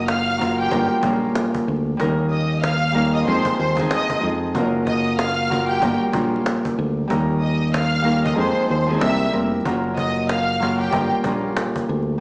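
A rich, bowed violin section carries the melody up front, its expressive vibrato sitting close and trailed by a digital delay until it drops away at 11.1 seconds. This gritty, dark boom-bap hip-hop piece moves at 94 BPM in 4/4 with a 60% swing on the sixteenths. Beneath it, a fingerpicked Celtic harp rings out warm accompaniment, and a fingered electric bass adds a round, punchy low end. A woody cajon with faint snares keeps the beat as the chords cycle through Gbmaj7, Gm7b5, Eb7 and Fm7, its kick falling silent from 8.4 to 9.7 seconds over the Fm7 and C7 turnaround. The whole mix plays as if through a big sound system in a bare stone room, with light reverb, vinyl crackle and a small-speaker tone, and the clip is cut from a longer piece.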